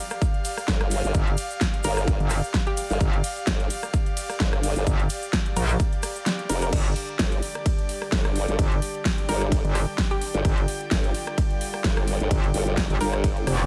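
Bass house at 129 BPM with a 16th-note swing, aggressive and bouncy, cut from a longer piece and built as a drop: an overdriven, punchy electronic kick and a big-room kit with a huge snare, metallic hats, rim click, ride and crash drive hard under two up-front wobble basses, a saturated, metallic FM wobble and a formant-sweep pulse-wave bass, both pumping against the kick. Above them an airy, breathy pad holds from the start, a hollow, nasal square pluck with tape character and delay sits in the background from 1.8 seconds, and a grainy egg shaker ticks close and dry until 6.7 seconds. The kick drops out briefly at 6.3 seconds before the drop repeats, now with a very quiet, distant chamber string section adding earthy bowed chords with light vibrato.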